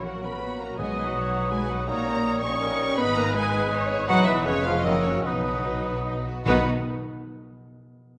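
Classical and urgent, this restless 3/4 excerpt in B major moves at 146-166 BPM with rubato. A dark, woody violin section carries the melody over a background of warm violins, distant violas, cor anglais, airy hollow flute, soft-attack clarinet, roomy bassoon and mellow horn chords. Ringing fingerpicked harp arpeggios run to 7.6 s, very quiet cellos and expressive double basses hold the bass, and timpani strike briefly at 0.8 s and again at 6.5 s, all in a wet scoring-stage reverb.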